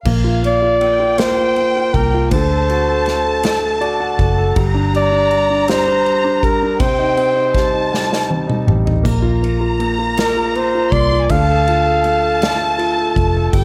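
Romantic and swaying, this brief excerpt from a longer six-eight pop ballad moves at a slow 53 BPM in Bb major, with chords drifting from Bbadd9 through D7, Gm and Cm to Bbsus2 and Dm. Up front, a flugelhorn carries the melody in a jazz style, its close-miked tone warm and tinged with vibrato as it enters at 0.5 seconds. A concert grand piano gives intimate, polished accompaniment with deep bass, long sustain and audible action noise, adding a fill at 3.4 seconds. Beneath it, a foam-muted, amped fingered electric bass sounds dark and round, while an acoustic drum kit played with bundle sticks offers a punchy kick, a medium-tuned snare, cymbals and toms, rolling into a fill at 7.9 seconds. A lush, woody violin section bowed with vibrato and a smooth top supplies a second line, and light reverb with small room ambience gives the whole a close, gentle setting.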